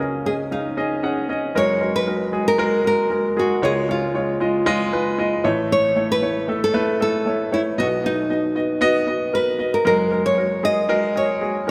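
Drenched in a long plate reverb, this dreamy pop fragment sounds soft-focus and spacious, yet its anthemic, uplifting mood comes through clearly. A fingerpicked, classical-toned nylon-string guitar carries the melody up front, trailed by a diffuse ambient delay, while an intimate, woody upright piano plays the accompaniment across a broad register, its action noise audible. After a brief opening on a suspended chord, the harmony moves at 1.6 seconds into a hopeful progression that returns to where it began at 9.9 seconds.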